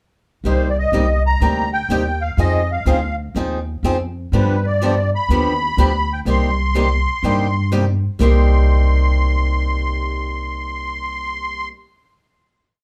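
A picked swing-style acoustic guitar and an upright bass start together at 0.4 seconds, joined almost at once by a musette accordion carrying the tune, in a short, bittersweet piece of jazz manouche with a swinging feel. The guitar is bright and boxy, picking four to the bar with short, accented chops on two and four. Beneath it, the pizzicato bass sounds woody and thumpy, playing a two-beat pattern of roots and fifths with walk-ups. The accordion has a reedy, shimmering musette tone and builds its melody from short motifs shaped into sentence-like phrases. The harmony moves through Cm7, Fm7 and G7 before returning to Cm7, and the piece closes on a final chord from 8.2 seconds. All three instruments sit up front, though the wet small-room reverb places the listener a little further back in the space.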